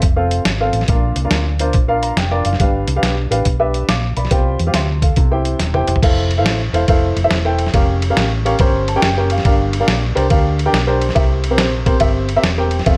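A compressed, pitched-down, lo-fi sampler-style drum kit with a thumpy kick, medium-tuned snare and a muffled, tape-warm tone opens this uplifting, swung gospel excerpt, alongside a dark, round, punchy hollow-body electric bass. A woody, natural upright piano joins up front almost at once and adds fills at 1.7 and 8.2 seconds, while the drums play a fill at 5.6 seconds before the harmony moves into richer seventh and minor-sixth chords. Light reverb gives the whole a reverent glow.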